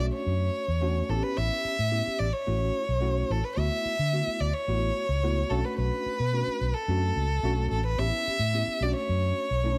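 A rich, bowed violin carries the melody up front, played by a single player with smooth, even vibrato and a close, intimate presence. This is a funky, bright slice of electric jazz fusion, cut from a longer piece, moving at 109 BPM in a straight 4/4. Beneath it, a tine electric piano supplies the accompaniment with a worn, slightly out-of-tune character, lightly overdriven and shimmering with ensemble chorus as if heard through its built-in speakers. A fingered electric bass sits up front with a dark, round, amped tone and is the most prominent part in the mix. All three parts play together throughout the 9.8 seconds, circling a harmony built on a rootless Bm9 that moves through A7, F#m7/A and D69 before returning to Bm9. Light reverb and a small room ambience give the ensemble a compact, club-like space.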